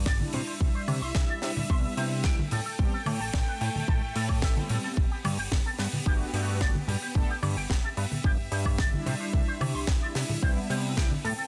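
A dense, heavily limited mix with light studio reverb carries this groovy, feel-good nu-disco cut at 110 BPM, where a punchy, up-front electronic kick and a dry, tight funk kit with high-tuned snare, hi-hat and woodblock join damped, low-tuned congas under a fat, detuned analog bass and sustained chords from clear symphonic strings that pump with the sidechain, while a bright, twangy envelope-filtered guitar riff with chorus and tape echo rides over round, brassy synth pads with phaser across Cmaj7, Am7 and Gmaj7.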